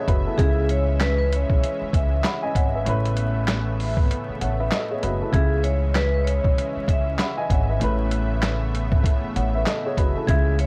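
A tough, dark boom-bap hip-hop fragment opens on a mellow, intimate upright piano with audible action noise and cassette-tape grit beside a lush, nasal detuned-sawtooth pad with chorus. A woody pizzicato upright bass with gut strings joins almost at once, along with a compressed, pitched-down, muffled sampler-style kit of thumpy kick, snare, hi-hat and handclaps swinging its 16ths up front. A ringing, metallic vibraphone melody with slow motor vibrato and tape echo follows, while the harmony alternates between C#m and Aadd9 over vinyl crackle in a small room, and the kick drops out briefly from 4.1 to 5.3 seconds.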